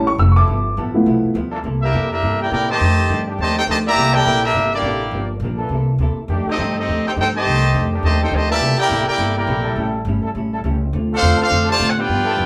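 A brief, intimate solo on baby grand piano, its action noise audible, opens this joyful, brassy swing jazz excerpt over woody pizzicato upright bass and a dark, clean, compressed hollow-body electric guitar, while a smooth-topped trombone section holds sustained chords from 0.4 s and, at 1.8 s, a bright, tight trumpet section takes the melody up front with light vibrato as a mellow, vintage trombone section plays a second line in the background, the band heard together in one room with wet reverb.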